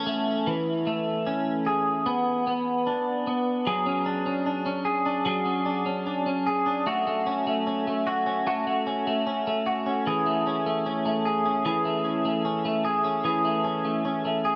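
A twangy, scooped clean electric guitar plays alone and up front, coated in analog chorus and tape echo, across this floating, blissful dream pop excerpt at 75 BPM in 4/4, drifting through Amaj7/E, Bm, Dmaj7#11/F#, A6 and back to Amaj7/E, with a new section arriving at 3.7 s, all set in a huge ambient reverb with a long 5.4-second tail.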